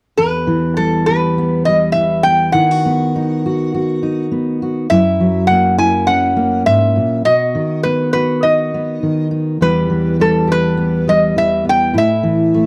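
From 0.2 seconds, a lap resonator guitar played with slide and fingerpicks carries a metallic, nasal melody up front over a dark, full-bodied fingerpicked dreadnought steel-string acoustic guitar, also close in the mix. This intimate, wistful acoustic folk fragment for a duo or small band moves at a straight 102 BPM in 4/4 in E harmonic minor, passing from Em through B/D#, F#7 and B before returning to Em and landing on A5. The dry, close studio sound has a 1970s character with a touch of reverb.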